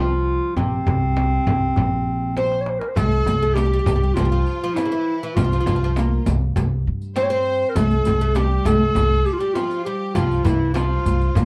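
A dark, distant-sounding clarinet carries the melody up front in this passionate Turkish makam ensemble excerpt in C makam hicaz, moving at 100 BPM in a straight 4/4. Beneath it, a woody upright bass played pizzicato sits prominently in the low end, while a bright, fretless oud with double strings adds a plectrum-plucked second line. A large, deep clay darbuka enters at 0.3 seconds in the background, joined just after by a small, hard-handed frame drum with a compressed, saturated edge. A drum fill at 2.4 seconds coincides with the arrival of a lush, bowed violin section, intense and rich with vibrato though set at a distance, and the riq's bright jingles join at 3.0 seconds as the music moves into its second section. A moderate small-room reverb and a dark, warm production wrap the ensemble together.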